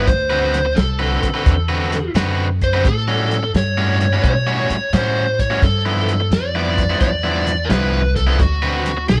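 Electric blues shuffle at 87 BPM in D mixolydian, soulful and rollicking, where a bright, overdriven stack guitar riff and a picked lead guitar melody through a small cranked amp ride up front over thumpy, woody pizzicato upright bass and a dry, dark soul drum kit with a tight kick and rolled-off top, moving through D13, A13 and G13 to land on D6 in a small room ambience, all cut from a longer piece.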